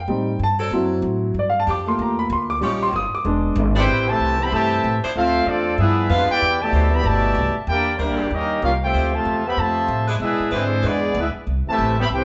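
Big band swing jazz at 190 BPM with a sultry, swinging feel, cut from a longer piece, opening with a smooth, vintage grand piano solo over woody pizzicato upright bass, while a clear saxophone section with light vibrato enters at 0.6 s holding soft-edged sustained chords. At 3.8 s a mellow, distant trumpet section takes the melody and a bright, close-miked trombone section adds a second line, as the harmony settles into A minor through rich ninth and altered chords. The band plays live together in one room, with moderate large-studio reverb and a rounded, dark top end.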